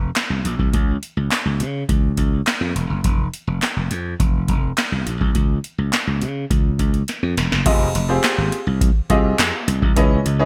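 A straight 4/4 groove at 104 BPM drives this slick, late-night slice of early-eighties boogie funk in F minor, cut from a longer piece. Growly, punchy slap bass and a booming analog drum machine carry it from the start, the drums pairing a deep kick, crisp snare and handclaps with metallic hi-hats and crash under gated reverb. After a drum fill at 7.1 seconds, a clear, open concert grand piano with subtle chorus enters at 7.7 seconds on an Fm9 chord, all set in bright 1980s-style digital production with light ambience.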